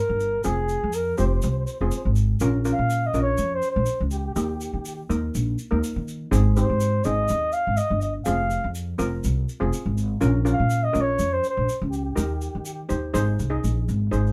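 Calypso in Ab major at 123 BPM with a light sixteenth-note swing, festive and bouncy, in which a mellow, lightly vibratoed flugelhorn carries the melody up front until 12.8 s, over a woody, thumpy pizzicato upright bass, a shimmering metallic steel pan played with hard rubber sticks, and a grainy, band-limited tube shaker, all moving through a Fm–Bbm–Eb–Ab progression that closes on Eb6 and Ab in a small, moderately reverberant room.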